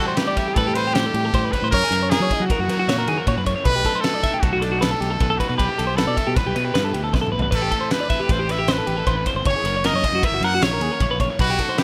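Set in a restless 5/4 at 155 BPM with a straight feel, this short cut from a longer math rock and midwest emo piece carries a wistful, unsettled mood. A brilliant trumpet sits up front with the melody, its pop-style phrasing coloured by vibrato and scooped notes. Beneath it a twangy, compressed twelve-string electric guitar picks clean arpeggios throughout, while a second, very quiet twelve-string adds accompaniment only until 1.7 seconds. A double-tracked, overdriven semi-hollow guitar plays a riff in the background, and a growling fingered bass, direct and amped with overdrive of its own, anchors the low end. The loose indie drum kit, with a fat snare, boomy kick and dark cymbals in a pumping room, comes in at 0.2 seconds and drops a fill at 7.1 seconds, all within a rough home-demo mix with small room ambience that moves through chords such as Am9, F#7, B7 with its third omitted, and Em7/B.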